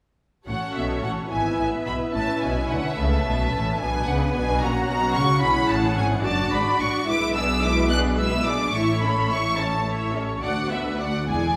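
From 0.5 s a string orchestra sets off together in a spirited, lively classical-period movement in 6/8 with rubato: clear, intense violins carry the vibrato-laden melody up front over a lush second violin line, smooth, even violas fill in the accompaniment, and rich double basses anchor the bass alongside expressive, soft-attacked cellos in the background, the ensemble set in the wet reverb of a scoring stage.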